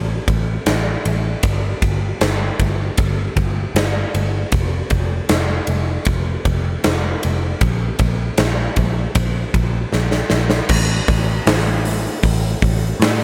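Dreamy and blissful, this short excerpt from a longer shoegaze and dream pop rock piece moves at an unhurried 78 BPM in straight 4/4, with a light reverb over the whole mix. A dark, round vintage electric bass, foam-muted and amped, anchors the low end from the start, while a huge arena drum kit enters at 0.3 seconds, up front with a punchy kick, medium-tuned snare, bright crash, ride and hi-hat ringing in a hall. A drum fill at 9.9 seconds carries the music into a new section at 10.7 seconds.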